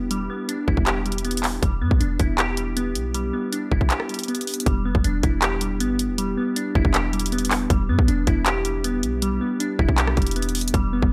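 Eerie and hard-hitting, this half-time trap excerpt in E minor at 158 BPM sets up-front glassy, detuned digital keys, sine-toned and chorused with a filter sweep, opening on an Em7 chord, alongside a deep, boomy, clean 808-style bass and a tape-warm electronic trap kit of hard-clipped kick, warm hi-hats, handclaps and rim clicks, with the kick dropping out from 3.9 to 4.7 seconds before a new section begins, all set in a digital ambience.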